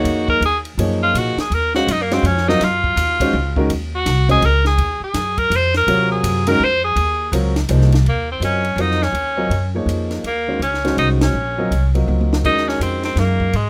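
A clear tenor saxophone with light vibrato and scooped notes leads this cool, intense modal jazz waltz, swinging in 3/4 and soloing up front through the first 8.1 seconds. Beneath it, a woody, growly pizzicato upright bass sits forward in the mix, an intimate concert grand with audible action noise and long sustain supplies the accompaniment, and a compact cocktail kit with dark cymbals, a high-tuned snare and a punchy kick sits well back. The band hits an accent at 11.2 seconds before a brief drum fill at 12.1 seconds, all captured in a dry, close room sound in this excerpt of a longer piece.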